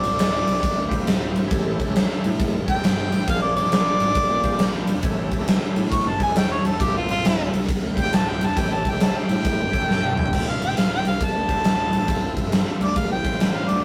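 Smoky and heavy, this swung blues rock and southern rock passage in D minor at 136 BPM, cut from a longer piece, features an up-front harmonica solo with overdrive, light vibrato, scooped notes and a smooth, jazz-style top, backed by a growly fuzz picked electric bass, a gritty tonewheel organ holding thick chords in the background with chorus vibrato and a fill at 9.4 seconds, and a punchy arena drum kit with bright cymbals that adds a fill at 9.9 seconds, captured in a rough rehearsal-room recording with light reverb.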